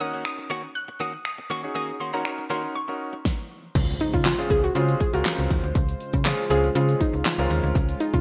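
A straight 4/4 pulse drives this summery, carefree slice of dance-pop, cut from a longer piece and dressed in bright 1980s-style digital production with light reverb. A soft, round pluck carries the melody through chorus and delay over a brilliant concert grand piano whose short-sustain chords pump with sidechain, while a clean, direct-recorded electric guitar plays a picked, compressed riff up front until 3.2 seconds. The electronic pop kit enters at 0.3 seconds, putting a punchy kick, fat snare, hi-hat, finger snaps, handclaps and crash cymbal up front in gated reverb. At 3.8 seconds the harmony moves from a rootless Ab7sus4 to Dbmaj7 as a snappy FM bass with a metallic attack arrives, joined by a shimmering, detuned pulse-width pad in the background, both pumping with the sidechain, along with a faint electronic impact. A very quiet, jingly tambourine adds a touch of live-room sparkle shortly after.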